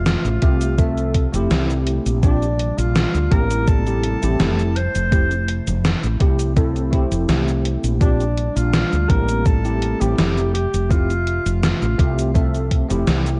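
Vaporwave at 83 BPM in F major, nostalgic and faded, cut from a longer piece with a dark, cassette-tinged production in a digital ambience. A mellow, distant alto saxophone carries the melody with light vibrato and analog delay, stopping at 12.7 seconds, over a bell-like tine electric piano with chorus and delay, a very quiet warbling tape-like pad, and a round, punchy fretless bass. Gated 80s drum-machine cabasa, hi-hat and snare sit up front beside a thumpy electronic kick as the chords move between Fmaj7 and Bb69.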